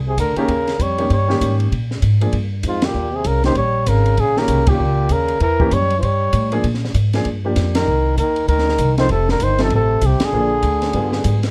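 A brisk swing groove at 195 BPM in 4/4 drives this short, relaxed slice of small-group jazz, carried by a pizzicato upright bass whose woody, thumpy tone sits up front and a compact cocktail drum kit of hi-hat, kick, snare and ride with a high-tuned snare, tight kick and rolled-off top. A breathy trumpet leads the melody with vibrato, scooped notes and a smooth, dark edge, while a bright trombone adds a forceful, punchy second line lower down, also bending into its notes with vibrato. A polished upright piano fills in the harmony with present, short-sustained voicings. The band hits shared accents at 2.8, 4.6 and 7.7 seconds as the changes move from Eb7 through Edim7, Cm7 and F before closing on Bb7 and G7b9. Light reverb and a mellow, cozy production give the whole fragment a small-room intimacy.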